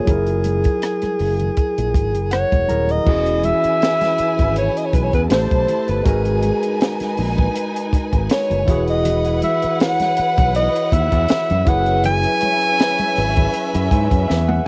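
A warm, up-front alto saxophone carries the melody through this silky, smooth slice of lush 1970s-style soul, its jazz-style vibrato ringing out from G#4 to G#5 at a relaxed 80 BPM with a gentle swing on the sixteenths. Beneath it, a barky tine electric piano, lightly overdriven through a combo amp, supplies the chords and adds fills from 1.9 to 3.1 seconds and again near the close, while a very quiet vibraphone with soft mallets adds a mellow, metallic shimmer with slow motor vibrato. A bright, punchy fingered electric bass sits up front, and a compact cocktail drum kit with dark cymbals, a high-tuned snare, rim clicks, toms and a punchy kick keeps time, ending on a short drum fill, with soft-handed, close and dry congas tucked in quietly alongside. At 3.1 seconds a rich, expressive studio violin section enters with a bowed, vibrato-laden second line, as the harmony moves from F#9 through Eadd9, Am9, G#m9 and Emaj9 to a suspended F#9sus4. 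The sax and drums carry a cassette-tape character, and the whole is framed by small room ambience with the intimate feel of a home cassette recording, cut from a longer piece.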